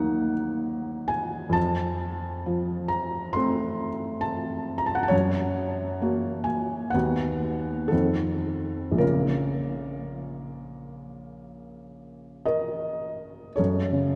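Played in a free, rubato 4/4 that drifts between 46 and 69 BPM, this short excerpt from a longer romantic nocturne in Bb minor has a wistful, yearning mood. A single felt-muted upright piano carries everything, sounding soft, mellow and intimate, set up front with its action noise clearly audible. Its range stretches from Bb1 up to C6, and the harmony moves through Ebm, F, Gb and B/D# before reaching F7 at 7.9 seconds and settling on Bbm at 9.0 seconds, then turning to F#m at 13.6 seconds. A deep church reverb with a long tail surrounds the instrument. The production is dark, with the top end rolled off, which gives the whole fourteen seconds a hushed, shadowy character.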